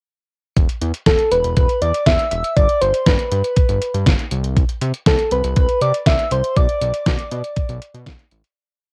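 A detuned 8-bit digital drum machine sits up front with a thumpy kick, fat snare and hi-hat, its tape-warmed, sampler-style beat re-recorded in a small room, driving this melancholic, cool synth-pop piece at 120 BPM in E minor. A thick, saturated sawtooth bass with a filter pluck runs as a sequenced line underneath, while a round, gentle, keys-like FM lead enters at 1.1 seconds with a motif-based melody bathed in chorus and plate reverb. Moving through E7sus4, G, Cmaj13 and Bm, the short verse has a lo-fi home-cassette character and fades out from 6.6 seconds to its close at 8.6 seconds.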